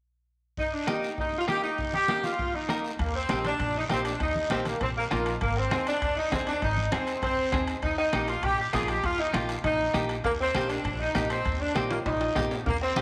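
A wet echo chamber reverb bathes this sunny, danceable cumbia excerpt at 198 BPM in Eb major, where an up-front, clear saxophone section with light vibrato and tape echo carries the melody from 0.6 seconds over a raspy guiro, low-tuned damped congas and a saturated, soft-beater bombo sitting in the background. A clean, picked semi-hollow electric guitar adds compressed accompaniment from 0.9 seconds, and at 3.0 seconds a woody, thumpy pizzicato upright bass and very quiet, ringing metal-shell timbales join as the harmony moves between Eb and Ab. A drum fill arrives near the end of the passage.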